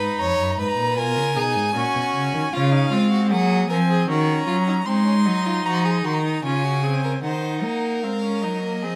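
A string quartet begins together in a solemn, contemplative baroque-style classical fugue at 76 BPM in 3/4, with a focused, close first violin carrying the melody over a clear, smooth second violin line, a rich but distant viola accompaniment and an up-front cello bass with soft attacks, vibrato and expressive portamento, each part bowed by a single player in a moderate stone-room reverb.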